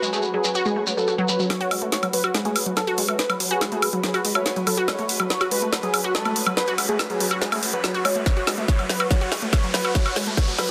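A bright, punchy unison pluck riff with dub echo drives this hypnotic psychedelic trance build-up, joined by a thick, dark unison lead through phaser and tape echo, a bubbling, resonant stepped-filter texture and a cloudy granular pad in the background, while a grainy, mellow shekere opens the cut before an overdriven drum-and-bass kit of woody snare, bright hats and woodblock takes over at 1.5 seconds, a background riser climbs from 4.6 seconds, and a tight electronic kick lands at 8.3 seconds, all in a lush hall and a dense, heavily limited master.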